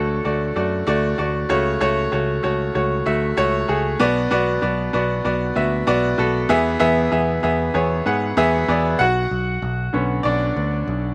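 Uplifting and warm, this piano-driven pop excerpt moves at 96 BPM in a straight 4/4, with a bright, woody upright piano set up front, its slapback echo and audible action noise lending an intimate, brilliant edge, over a picked electric bass that sounds direct and amped, through D, F#m/C#, Bm and E before the piano takes a solo over Bmadd9 at 9.0 s, the whole recording dry and open-air, captured outdoors.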